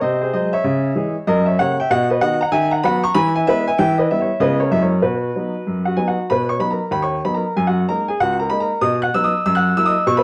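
A woody upright piano with long sustain and a slapback echo sits up front, playing solo across a span from C#2 to F#6 in this playful, swinging stride-jazz fragment at 191 BPM in B major, tuned slightly flat to A4 = 436 Hz and captured in a dry, close 1970s-style studio sound as it moves through a progression of dominant sevenths and major chords centred on B.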